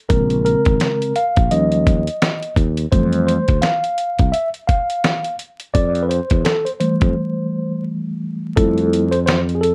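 Jazz-hop with a smooth, warm mood at 85 BPM in F major, this short cut sets a clean tine electric piano, heard through its built-in speakers, out front as the lead voice, moving through Bbm7, Eb9 and Fmaj7 before settling on Fmaj9 at 8.6 seconds. Beneath it, a growly, punchy fretless electric bass sounds bright and amped, while a gritty, compressed sampler-style drum kit brings a thumpy kick, fat snare and hi-hat with a 16th-note swing. Light reverb, vinyl crackle and a dark, warm production give the whole a dusty feel, with a break from 7.2 seconds.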